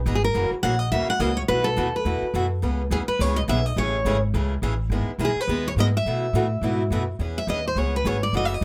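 Acoustic string swing in E major at a brisk 210 BPM with a charming, playful lilt, this short excerpt cut from a longer piece sets a woody, thumpy pizzicato upright bass on gut strings against a bright, fresh-stringed picked steel-string guitar playing accompaniment and a boxy parlour-style picked steel-string guitar carrying the melody with audible finger squeak, all up front in light reverb, moving through chords like F#7, C#m7 and Amaj7 before a steel-string guitar solo arrives at 7.2 seconds over an E6.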